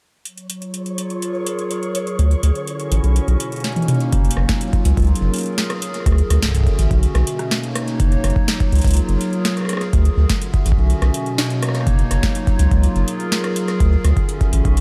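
A warbling, nostalgic pad in lo-fi square and triangle tones sustains maj9 chords over F# major throughout this wistful, intricate IDM passage at 124 BPM, joined by a booming analog drum machine with crisp snare, metallic hats, toms and rim clicks under overdrive and delay, a grainy, flickering detuned texture that pumps until 4.1 s, a round, dark bass entering at 2.2 s, and an overdriven deep electronic kick arriving after a drum fill at 4.1 s, all set in light reverb.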